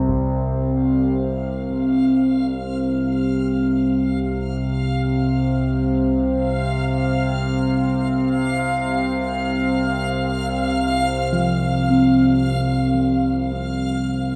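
Vast and ominous, this free-time ambient passage is cut from a longer piece and rests on a single Csus4 harmony. An analog drone sits up front from the opening, its sawtooth and pulse-wave tones evolving and warbling through pulse-width modulation and chorus, with a slow attack and long release that give it a vintage character across the range from C2 to C3. At 0.8 seconds a reversed, swelling texture joins high on F5, a bright, detuned triangle sound with granular grain, dreamy shimmer reverb and its own built-in reverb. Near the close, at 11.3 seconds, bronze gamelan-type bossed gongs arrive in the background, playing arpeggios between F3 and C4 with a round, beating, dark tone carried on tape echo. The echo-heavy mix sits in a moderate plate reverb with a 3.5-second decay, lending the whole excerpt a deep, suspended sense of space.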